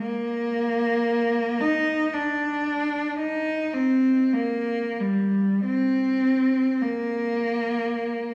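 Unfolding in a rubato 3/4 at a slow 42-57 BPM, this serene, lyrical classical passage in Bb major, cut from a longer piece, features a single bowed cello playing unaccompanied between G3 and Eb4. The cello's tone is rich, smooth and even, and its vibrato gives the line an expressive, songlike quality. A wet recital hall reverb, heard from further back in the room, lends the instrument a distant glow over its 8.3 seconds.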